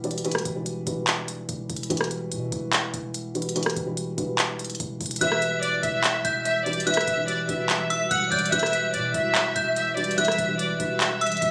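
A half-time trap beat at 145 BPM in E minor drives this menacing, brooding hip hop excerpt, where crisp hats, handclaps and rim clicks sit up front over a punchy, heavy 808 bass and a soft, felt-muted upright piano with audible action noise, until at 5.2 seconds a lush, bowed violin section with vibrato takes the melody alongside a bright, inharmonic FM bell, both trailed by digital delay, and an ethereal, detuned pad joins at 6.2 seconds in the background, all captured on a phone in the room with light reverb.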